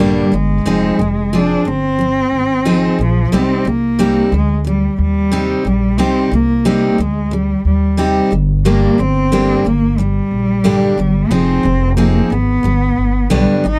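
A dry, close recording with a 1970s studio character sets all three players up front in this tender, wistful pop fragment, which is cut from a longer piece. A single bowed cello carries the melody with vibrato and a nasal, focused tone. Beneath it, a bright, full-bodied dreadnought guitar is picked with audible finger squeak, and a woody, growly pizzicato upright bass supports the minor-key chords throughout.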